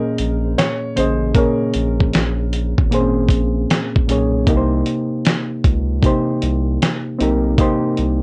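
Melancholic and hazy, this lo-fi hip hop fragment drifts along at 77 BPM in a swung 4/4, moving from Bbm7 to Cm7 at 4.5 seconds. A soft, felt-muted upright piano with audible action noise carries a brief melody that stops at 2.9 seconds, while a reedy, slightly out-of-tune electric piano, lightly overdriven through built-in speakers with plate reverb, plays the accompaniment. From 0.2 seconds a deep, saturated sine sub bass and a gritty, compressed sampler-style drum kit with a thumpy kick and fat snare sit up front, all coloured by worn cassette tape with warbly pitch drift.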